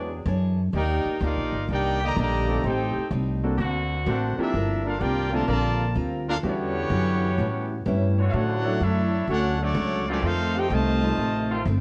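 Swinging and joyful, this short big band swing passage at 126 BPM puts a bright trumpet section up front on the melody over a clear trombone section's second line and a vintage trombone section holding sustained chords. A polished grand piano and, in the background, a boxy, picked parlour steel-string acoustic guitar supply accompaniment, all anchored by a woody, dark pizzicato upright bass and set in a large studio's moderate reverb with the warbly pitch drift of worn cassette tape.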